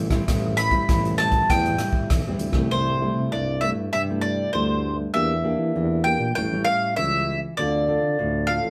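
A lively, bittersweet blend of samba and choro in A minor at 99 BPM opens with nylon-string guitar and tuba together. The thumb-plucked guitar sounds full-bodied, with fresh strings and an audible finger squeak, while the mellow tuba holds the bass with vibrato and a smooth top. A polished, airy drum kit with a swinging big-band character joins at 0.1 s, playing hi-hat, rim click and a punchy kick. At 0.6 s a bright, woody mandolin joins up front, its picked double strings carrying the melody and taking the spotlight in the opening passage. The drums stop at 2.7 s as the harmony moves from Am7 to C6, then travels through Em7b5 and A7 to Dm7 before the fragment breaks off. The band plays live in one room with a moderate studio ambience.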